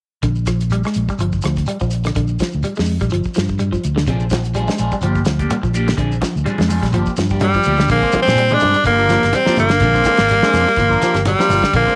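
A driving, joyful afrobeat groove opens with twangy, slightly broken-up electric guitar arpeggios through a phaser, a round, amped fingered bass, a dry, damped 70s drum kit with a tight kick and rim clicks, and a grainy shekere in the background, set to a light 16th-note swing. At 4.1 seconds a second, darker phased guitar adds stabs, while soft-handed, low-tuned congas sit very quietly underneath. A raspy, gritty tenor saxophone with vibrato takes the lead up front at 7.4 seconds, and a buzzy vintage combo organ joins in the background at 8.0 seconds before this cut-off passage ends.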